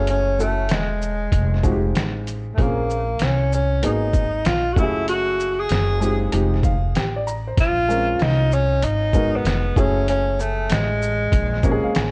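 A breathy tenor saxophone leads this nocturnal, smoky jazz-hop excerpt at 96 BPM, its subtone line carrying vibrato and scooped notes through a digital delay over a mellow, short-sustained grand piano and a woody pizzicato upright bass, with a gritty, pitched-down sampler-style drum kit arriving at 0.1 seconds to add a thumpy kick, snare, hi-hat and shaker in a loose 16th-note swing. The harmony drifts through minor ninth chords such as Gbm9, Fm9 and Bbm9, and the piano steps forward with fills at 6.3 and 11.3 seconds. Light reverb and the worn, warbling pitch drift of old cassette tape give the whole a hazy, intimate late-night sound.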